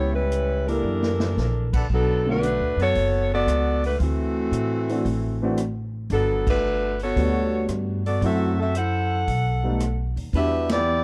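This short excerpt from a longer piece has a studio-reverb sheen, with an up-front saxophone section and a woody, dark upright bass at the forefront. It is swinging, dramatic big band jazz in B minor at 114 BPM, with a strong swing feel on the eighth notes. The tight saxophone section carries the melody with light vibrato and a smooth top, while a baby grand piano with long, natural sustain supplies the accompaniment and the pizzicato bass on steel strings anchors the low end. The drum kit sits distant and roomy with a punchy kick, a medium-tuned snare and a rolled-off top, working through crash, ride, hi-hat, rim click and snare, and it plays a fill from 0.8 to 1.4 seconds. A trumpet section adds one brief, warm stab at 1.7 seconds, and the band hits accents at 6.4 and 10.6 seconds. The harmony moves from C#m7b5 and F#7alt into Bm7, D9, Gmaj9 and on through B7b13 to Em7.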